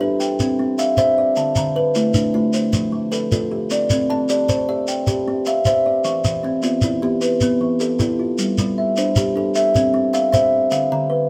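Two kalimbas open together, weaving arpeggios in a rippling, hypnotic southern African mbira-style interlocking cycle at 103 BPM in a straight 12/8, taken from a longer piece. The louder kalimba has a mellow, woody tone from a soft fingertip pluck, while the second, plucked with a thumbnail, sounds bright, dry and close-miked, its ringing notes full and up front. A grainy shekere joins at 0.2 seconds and adds percussion until 10.9 seconds. The harmony moves through C, Dm, F and Em before a new section at 8.4 seconds turns to a bare G5 and then back to C and Dm. The trio plays live in one room, and a moderate stone-room reverb gives the plucked tones a hollow, resonant halo.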